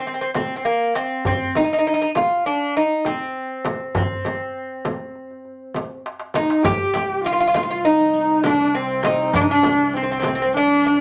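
In a straight 9/8 at 200 BPM counted in eighths, this soulful, longing Turkish makam ensemble passage in C makam huseyni sets a metallic, double-strung Greek bouzouki melody up front over a crisp metal-shell darbuka and a deep frame drum under soft hands; during a drum fill, a dark, woody kamancheh enters at 6.4 seconds with vibrato and portamento as a second line, joined at 6.6 seconds by an intimate sul tasto chamber cello section droning on C2 and a riq in the background, within a wet studio reverb.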